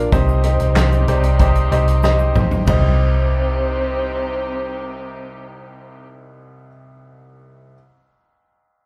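A bittersweet, dramatic piano-driven pop fragment in C minor at 94 BPM opens with a clear, woody upright piano, a soft octave-layered synth lead carrying the melody through chorus, tremolo and echoes, reedy gut-string chords from a studio string section, and a dark, foam-muted, up-front electric bass, while a punchy natural drum kit with a fat snare, handclaps and a grainy, very quiet egg shaker play until a drum fill at 2.0 seconds, after which the drums drop out at 2.8 seconds and the piano, synth, strings and bass carry on, with the piano ringing out last to 7.8 seconds, all heard through a club PA with light reverb.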